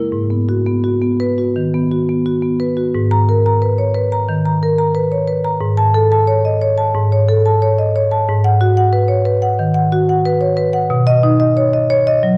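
Contemporary classical excerpt for solo marimba in G# minor, playful and warm, moving with a rubato feel around 90 BPM in 4/4, where the full, close-miked marimba with medium hard mallets sits up front, ranges from G#2 to A#5 over harmonies like G#m7, Amaj7/G# and Badd9, enters a new section at 2.9 seconds, and rings in a moderate recital-hall reverb within a dark production.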